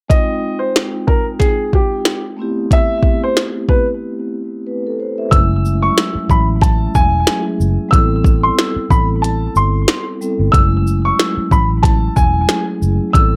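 This reflective yet tough boom-bap hip-hop excerpt opens with a woody, polished upright piano carrying the melody up front, a mellow vibraphone with soft mallets and a slow motor vibrato ringing beneath it, and a glitchy, electronic drum kit of soft kick, tiny snare, clicky hats and shaker. The groove sits at 92 BPM in 4/4 with a lazy 16th-note swing, moving through F# dorian over rich ninth chords: Fm9, Am9 and F#m9. The piano is treated with filtering and delay, while the vibraphone carries a cassette-tape coloring along with its own filtering. After a break at 4.0 seconds, a dark, round, foam-muted electric bass enters at 5.3 seconds, adding an amped low-end weight as the second section begins. The drums sound re-recorded in a large room yet stay up front, and a light reverb wraps the mix in a gentle sense of space.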